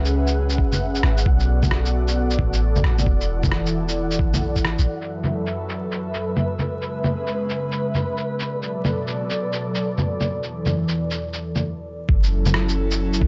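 An airy, breathy pad opens this wistful, melancholic future garage piece at 133 BPM in F# minor, its detuned, chorused chords pumping alongside a deep, round 808-style bass while a grainy, flickering texture hovers in the background and pitched-down, muffled shaker, bongos and rim click swing up front. A thumpy, tape-warm kick joins at 0.6 s, then the kick falls away at 4.6 s and the bass at 4.9 s as the pad drifts through C#m7, Bm7 and E7sus4 with the percussion. After a brief stop at 11.6 s, kick and bass return on F#m7, all framed by a dry, gritty hardware sound with vinyl crackle and a dulled top end.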